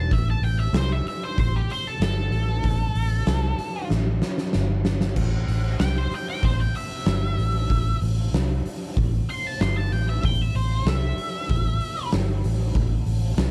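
An octave-fuzz lead guitar solo carries this gritty, swaggering cut from a longer blues rock power trio piece with a southern rock edge, set at 95 BPM in a straight 4/4. The distorted, picked guitar is colored by wah and tape echo and sits back in the balance, playing its melody from the start until it stops at 12.1 seconds. Underneath, a vintage fingered electric bass sounds round and foam-muted, punchy and up front, while an oversized low-tuned acoustic drum kit brings a boomy kick, a fat snare, dusky cymbals and a saturated, pumping big-room sound. A drum fill begins at 3.9 seconds as the harmony moves from a rootless Gsus4 into a chordless stretch, and the band lands on A5 at 5.2 seconds to repeat the same section. The overall sound is dry, with little reverb.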